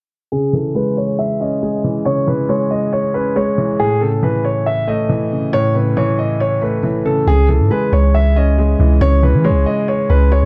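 A long, sustained 808-style bass stands out once it arrives at 7.3 seconds, deep and sine-like with a fast attack and a decaying tail, pushed up front beneath a menacing, tense drill track at 138 BPM in a half-time feel in C# minor. From 0.3 seconds onward, a dark concert grand piano carries both the melody, mellow and boxy with long sustain, treated with low-pass filtering and delay, and a low accompaniment with deep bass, moving between C#m and A under a filter sweep through the opening section. The studio ambience stays dull and closed-in, and this short cut from a longer piece ends at 10.5 seconds.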